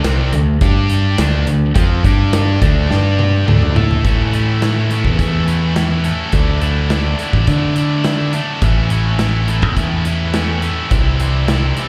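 A tight, double-tracked distorted electric guitar leads this driving, confident classic rock excerpt, its bright picked riff sitting up front and bouncing between D5 and G5 power chords in the opening section. A big acoustic rock drum kit with a punchy kick, medium-tuned snare, hi-hat and toms holds a straight feel and plays a fill from 2.9 to 4.0 seconds. At 4.0 seconds the music opens into a second section whose chords move through A, Dsus2, A and C. Underneath, a modern picked electric bass with a growly, direct tone stays prominent in the mix. The whole piece comes across like a live club gig heard through the venue's sound system, with a touch of room reverb, and it is cut from a longer performance.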